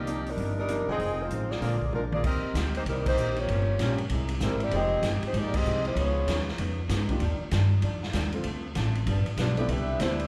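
A moderate concert-hall reverb lends a roomy glow to this fragment of sultry, dramatic big band swing at 193 BPM, where a tight saxophone section carries the melody up front with vibrato, pauses at 6.4 seconds and returns near the end. A woody, thumpy upright bass plucked on gut strings sits forward, while a distant drum kit with a punchy kick swings behind it and adds a fill at 1.9 seconds. In the background a dark, clean hollow-body electric guitar and a warm grand piano accompany through extended jazz chords, and a clear, smooth-topped trumpet section adds brief stabs near the start.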